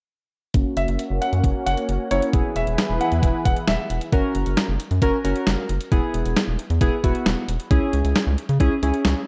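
At 0.5 s a thumpy, sampler-style drum machine, a rubbery square-wave bass and round, chorused analog keys under a filter sweep start together in this cool, melancholic synth-pop excerpt at 134 BPM, joined briefly by a clear, polished grand piano line with tape echo from 0.8 s and a lush, detuned unison pad until 4.1 s, while F#, E and C#m chords move through a dark production with light reverb.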